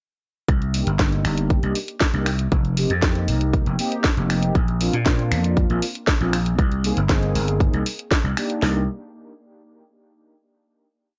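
A bright, growly vintage slap bass anchors this short nu-disco piece, sitting up front with a punchy, amped tone and a dotted-rhythm line that ranges from F1 to Bb2. Set at 118 BPM in straight 4/4 and C minor, tuned to A4 = 442 Hz, the groove has a cosmic, sensual mood. Two layered electronic house drum kits enter together at 0.5 seconds, both re-recorded in a small room: one drives a four-on-the-floor kick with a cracking snare, while the other adds a disco backbeat of closed and open hi-hats, finger snaps and snare. Mellow synth brass joins at 0.7 seconds with syncopated chord stabs in rootless voicings, its round, detuned sawtooth and triangle sound colored by chorus, cassette tape character, sidechain pumping and analog delay. The harmony moves from Cm7 through F7sus4, Bbadd9 and Abadd9, then settles on a final Cm7 chord from 8.6 seconds. The digital ambience is dry, with a gritty hardware finish, transformer saturation and a top end that stops at 7.6 kHz.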